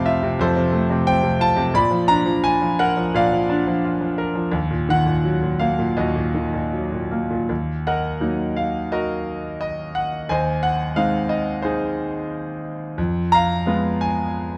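Under light reverb and a dark production, a bright concert grand piano sits up front with a brilliant tone and deep bass as it plays a brooding, cool lyrical classical solo in Eb harmonic minor at a rubato 76-91 BPM in 4/4, stating one phrase twice over chords moving from F through Ebm to Fdim in this 14.6-second passage cut from a longer piece.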